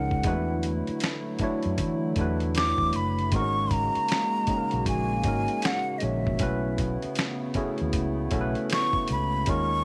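A breathy jazz flute carries the melody up front in this introspective, sultry neo-soul excerpt, floating over a worn, slightly out-of-tune tine electric piano that sounds as if heard through its built-in speakers. Beneath them, a soft, detuned pad with a slow attack holds sustained chords in the background, its flute-like tone shimmering with chorus. A dark, round fretless electric bass adds punch to the low end, and a dusty sampler-style drum kit comes in at 0.1 seconds with a thumpy kick, a medium-tuned snare, hi-hat and finger snaps, all gritty and compressed. The groove has a relaxed swing in the R&B vein, and the harmony drifts through suspended ninth chords on E, G# and B. The flute's vibrato and lifted highs give it a hollow, airy glow, while the dry, close sound keeps every part intimate until the fragment ends at 9.8 seconds.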